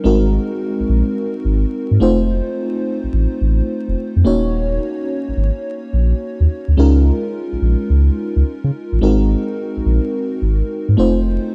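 Dark, warm production with light reverb and vinyl crackle frames this bouncy, confident new jack swing R&B clip at 107 BPM with a swung sixteenth feel, where a lush, dreamy FM electric piano with a soft pad layer and chorus plays mellow, decaying chords through Ab9, F7, Ebm7 and Db69 over a deep, thick, saturated sub bass that sits up front and sustains under the whole 11.5-second cut from a longer piece.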